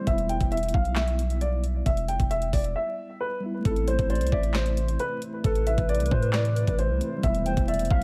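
Menacing and brooding, this half-time trap excerpt in A minor at 134 BPM sets a boxy, dark grand piano melody over a mellow tine electric piano and a long, deep sine 808 bass, with knocking kick, sharp snare, bright hats and claps up front, a break at 2.8 seconds, a hollow, woody clarinet-like synth lead entering at 3.9 seconds and a warbling, detuned ambient pad joining at 4.8 seconds, all in an echo-heavy mix dusted with vinyl crackle.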